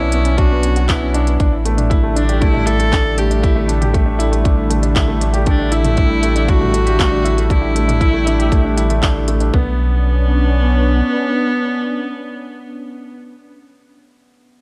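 Piano and strings electronica at 118 BPM in 4/4 with a straight feel, this excerpt from a longer piece carries a cinematic, melancholic mood over Bmadd9 and A7sus4 harmony. It opens at a drop, where a tight electronic kick and a produced electronic kit with handclaps, smooth hi-hats and toms drive the groove in light studio ambience. A deep, round sine sub bass sits up front, pumping with the sidechain, while a lush, detuned sawtooth unison pad holds slow-attack sustained chords in the background, thickened by chorus and breathing with the same pumping. Over this, a polished, present baby grand piano plays a riff and a single bowed viola sings a smooth, even melody with vibrato, both touched by tape echo. The drums drop out around 9.5 seconds as the music moves into a new section, the sub bass stops at 11.0 seconds, the viola and pad fade at 13.1 seconds, and the piano rings on alone until 14.6 seconds, all within a light reverb.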